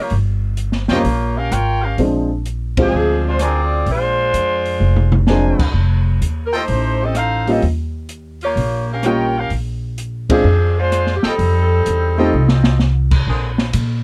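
A bright, loose saxophone section carries the melody up front in this energetic big band swing excerpt, set at 128 BPM in 4/4 with a swung eighth-note feel in Bb mixolydian. Beneath it, a woody, thumpy upright bass played pizzicato anchors the groove, while an open jazz drum kit with dark cymbals, a medium-tuned snare and a punchy kick keeps time, adding fills around 4.8 and 12.3 seconds. A warm baby grand piano comps from 0.9 seconds, and a clear trumpet section with light vibrato punctuates the line with stabs, the band hitting accents together at 2.7 and 10.2 seconds. The harmony moves through ninth chords on Eb, Bb and F, and near the close an edgy, tight saxophone section holds a brief sustained chord. Light reverb and a dark, warm production give the whole a cozy glow.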